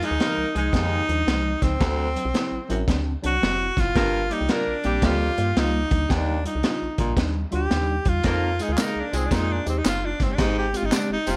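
A breathy, whispered tenor saxophone carries the melody up front from the opening moment of this uptempo 1960s-style soul excerpt, set in F dorian at 112 BPM with a swung 4/4 feel and an urgent, passionate mood. Beneath it, a horn section with a smooth top plays a second line through tape echo, and a mellow tine electric piano adds phaser-tinged accompaniment. A woody, round FM bass holds the low end alongside a crunchy breakbeat kit with a punchy kick, a high-tuned snare and a gritty, saturated, rolled-off sound. At 0.7 seconds a baritone saxophone with vibrato joins with a jazz-style riff, while the harmony moves from Fm7 through D7, Gm7 and Ebmaj7 before returning to Fm7 and settling on Abmaj7. Tambourine and group handclaps enter at 8.6 seconds, the horn section drops out at 9.6 seconds, and light reverb with studio ambience frames the whole ensemble.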